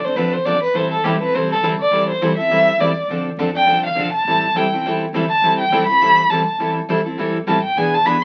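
A bowed violin sits up front, playing an expressive solo across the whole 8.2-second excerpt with vibrato, soft attacks and portamento slides that give this fiery jazz manouche passage a bittersweet edge. Beneath it, a bright, full-bodied steel-string guitar plays picked accompaniment from the start, and a second picked steel-string guitar with fresh strings and audible finger squeak joins at 0.2 s. A very quiet upright bass adds a woody, thumpy pizzicato foundation under the swinging 4/4 groove. The harmony moves between Dm7 and Am7. The recording carries a moderate studio ambience and the crackle of a very old 78 rpm record, lending the acoustic string band a vintage, worn character.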